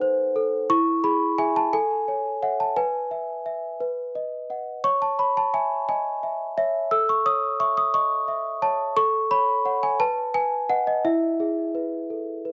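Tender and innocent, this short classical lullaby for solo celesta moves at a gentle 58 beats per minute in dotted quarters, in a straight 6/8 lilt and the key of E major, tuned to A4 = 439 Hz. The celesta plays alone from 0.0 to 12.5 seconds, ranging from D#4 up to E6, its bell-like, delicate and sweet tone coming from medium felt hammers. Close-miked and up front, the instrument sounds full, with a touch of tape echo trailing its notes. The harmony opens on a diminished chord before settling onto E, then passes through A, C#m and F#m on the way to B and a return home to E at 11.0 seconds. A moderate studio reverb and a dark production with softened highs give this passage, cut from a longer piece, a hushed, bedtime glow.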